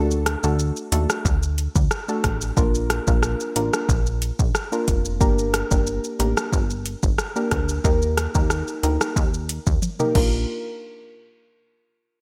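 A straight 4/4 dancehall groove at 91 BPM in Bb major sets a sunny, summery mood in this short cut from a longer piece. The electronic afro-pop drum kit sits up front with a deep kick, metallic hi-hats, rim clicks, shaker, toms and crash cymbal, all bathed in gated reverb. It opens on a break that lasts until 1.3 seconds and closes with a fill from 9.8 seconds. Beneath it, a punchy, funky analog bass built from sawtooth and pulse waves delivers decaying low notes with a fast attack, a filter pluck and a moving notch. A soft, round pluck, gentle and dark with a wave-folded edge and chorus, sits forward in the mix and carries the chords D, Bb, Gm and Eb before returning to Bb near the end. Light reverb, digital ambience and bright 1980s-style digital production lend the track a polished sheen.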